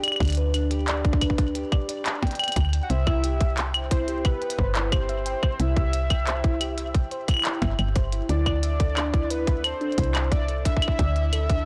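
Glitchy and cerebral, this IDM fragment moves at 89 BPM in a straight 4/4, cut from a longer piece and built over chords of G5/D, C and Dsus2. A harp-like synth pluck rings out soft, mellow arpeggios from the first moment, colored by chorus, phaser, cassette tape and delay, while a glitchy drum kit of claves, handclaps, clicky hi-hats and percussion blips sits up front with studio reverb and digital delay. At 0.2 s a tight, tape-tinged electronic kick and a woody, round FM bass arrive, the bass low and rounded through tube saturation. At 2.8 s a warbling, nostalgic lead enters, its detuned blend of triangle, sawtooth, square and sine layers held in sustained tones with vibrato, chorus and dub echo. The mix is dry, blown-out and overdriven, giving the delicate parts a gritty, crushed frame.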